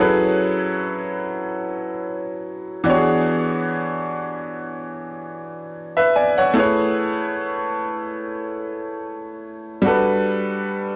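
A dark, warm production sets a bright concert grand piano up front in a moderate echo-chamber reverb, its brilliant upper notes and deep bass keeping a natural character. This introspective, smooth R&B passage is cut from a longer piece and runs 11.0 seconds, with the solo piano moving through F#m11, E13 and Amaj7 before settling on Gmaj9 at 9.8 seconds.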